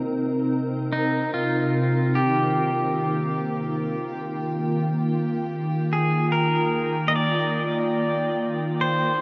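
A twangy, clean pedal steel guitar enters at 0.9 seconds with a slide-and-volume-swell melody trailed by a diffuse ambient delay, floating over a glassy, warbling vintage FM pad whose slow-attack chords, thickened by ensemble chorus, drift from Cm7 through Eb to Ebmaj7 in this serene, melancholic ambient piece in three, all set in a vast, echoing space with a dark, softened top end.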